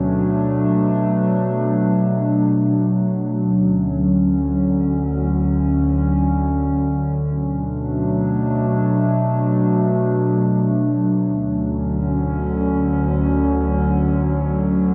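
A warbly, tape-like pad carries this dreamy, blissful hip hop excerpt entirely on its own, sitting up front and sounding nostalgic and lo-fi as it spans D2 to D4. Its tone blends square and triangle waves, detuned and touched by ring modulation, with slow attacks, sustained notes and long releases that give it a mellow, warbling character, further softened by chorus and its own built-in reverb. The music floats in free time in D major, tuned slightly sharp to A4 = 441 Hz, moving between Bm7 and Dmaj7 chords. A shift to a new section arrives at 11.3 seconds on a Dmaj7, carrying through to the close at 14.9 seconds. A huge ambient reverb with a long 7.5-second decay surrounds the pad, wrapping this fragment of a longer piece in a hazy, weightless space.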